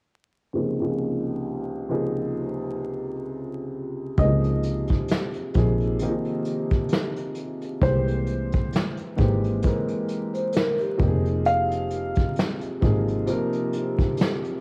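A dark, woody upright piano opens this cosy, dreamy lo-fi hip hop excerpt at 66 BPM in Db major, its cassette-tinged chords passing through a filter sweep. At 4.2 seconds a felt-muted upright piano takes the melody, joined by a rich, bowed double bass with vibrato and portamento and a vintage brush drum kit with a punchy kick and gritty sampler texture. Around 10.3 seconds a soft-mallet vibraphone adds a brief, airy, ringing second line through tape echo as the chords, having moved from Dbmaj9 to C7b13, settle on Fm7. All of this sits within a home-cassette sound of vinyl crackle, small room reverb, swung 16ths and the muted piano's intimate action noise.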